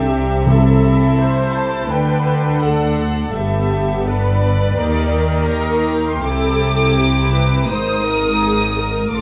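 A moderate scoring-stage reverb surrounds this tender, hopeful cinematic string passage, which moves at a rubato 83 BPM in 4/4 and is cut from a longer piece. An intimate, close violin section carries the melody with light vibrato above a pure, floating second violin line, while a woody, lush viola section fills the accompaniment and a rich cello section joins a dark, up-front double bass section on the bass, all bowed sul tasto. Timpani struck with hard mallets on calf heads sound articulate only from 0.0 to 1.5 seconds, as the harmony drifts from Am/C through D, Gadd9 and Eb to Cadd9 and Absus2.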